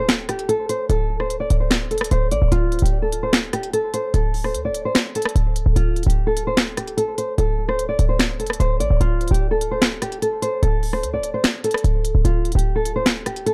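This hip hop and trap cut, taken from a longer piece, moves at 148 BPM in 4/4 with a half-time feel, sitting in D minor and tuned to A4 = 436 Hz. The mood is menacing and hard-hitting, with a thumb-plucked nylon-string guitar carrying the melody between F4 and D5, its small, warm, acoustic tone softened by a low-pass filter and trailed by tape echo. Underneath, a short 808-style bass spanning D1 to D2 hits punchy and tight, a sine body with a noise layer, fast attack and a decaying tail, sitting slightly louder than the other parts. The electronic trap drum kit enters at 0.1 seconds with finger snaps, crisp hi-hats, rim clicks and a sharp snare, all placed up front alongside the guitar and bass. The harmony rests on D5 before shifting to Dm at 12.2 seconds, and the dry, dark, warm production keeps the whole 13.5 seconds close and heavy.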